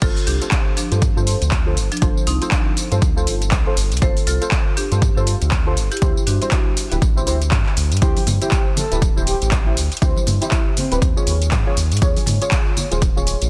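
A moody, hypnotic deep house groove at 120 BPM in 4/4, with a 16th-note swing that gives the drop its loose, rolling push from the first second. A punchy, overdriven electronic kick leads the mix alongside a round analog bass that pumps against the sidechain. A layered kit of crash, handclaps, metallic hats and tambourine, also overdriven, sits in a small room. Soft, detuned chord stabs, darkened by chorus, phaser, delay and vintage 12-bit sampler grit, move through G9sus4, D9sus4 and Eb9sus4 across the whole 13.5 seconds. A bright, airy marimba struck with hard mallets carries the melody until 7.0 seconds, and at 8.0 seconds a breathy, flute-like synth lead with vibrato and digital delay takes over briefly while ringing, close congas pulse in the background. The digital ambience and dense, heavily limited modern master keep this excerpt from a longer piece loud and tightly packed.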